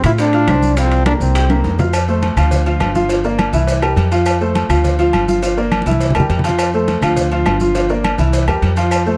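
Light reverb surrounds this sunny, danceable salsa passage at 206 BPM in F major, which opens with a clear, punchy trombone up front playing a short melody with light vibrato that stops at 1.6 seconds, as a drum fill leads into a repeating F, Dm, Gm7, C7 progression at 1.9 seconds. A smooth, vintage grand piano with short sustain and a dark, thumpy pizzicato upright bass on gut strings sit up front throughout. Ringing timbales and agogo bells, bright, damped congas, grainy, distant maracas, and background layers of tight, high-tuned bongos and cowbell and woody claves fill out the percussion, with another fill at 5.7 seconds.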